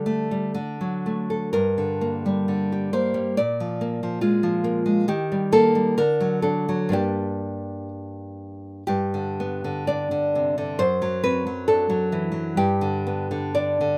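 A bright, fingerpicked nylon-string guitar opens alone on a suspended D chord, setting up a melancholic, passionate romantic piece in G minor that moves freely in rubato 2/4 at around 57-72 BPM. The up-front classical guitar moves through harmonies in G minor before turning to G major at 8.9 seconds, continuing until the passage breaks off at 14.0 seconds. A light reverb gently surrounds the solo instrument in this short section of a longer work.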